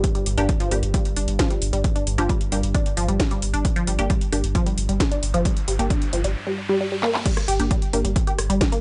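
Hypnotic and relentless, this short cut from a longer piece of driving peak-time techno runs at 133 BPM in a straight 4/4, sitting on a single G minor chord throughout. A punchy, up-front electronic kick anchors the groove, joined by a layered techno kit with a cracking snare, metallic hats, handclaps, rim clicks and a crash cymbal, both re-recorded in a small room. Beneath them a thick, saturated sine sub bass holds down G1 with tube grit, a low-pass filter and sidechain pumping, while a moody, dark pad drones in the background with chorus and its own reverb. A juicy, squelchy resonant blip pluck riffs between F3 and G4 through phaser and tape echo, and muted, wave-folded dub chord stabs between Bb3 and G4 add filtered punctuation from 0.4 seconds. An electronic riser builds from 4.8 seconds, a drum fill lands at 7.0, and the drop hits at 7.3 seconds. The sound is dry and gritty, with a hardware edge and a rolled-off top end.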